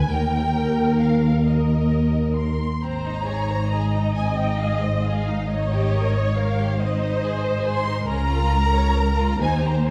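A slow, serene romantic movement for string orchestra in Ab major, moving at 45 dotted-quarter beats per minute in a rubato 6/8 with uneven beats. One violin section carries the lyrical melody with a smooth top and soft attack, while a rich, distant second violin line floats higher; the close viola section fills the middle, and a dark, woody cello section pairs with an up-front double bass section on the bass, all bowed with vibrato throughout the roughly 9.9-second passage. Harmony drifts from Eb through Ab and Bbm/Db to Eb6, set in a wet scoring-stage reverb with a dark, warm production.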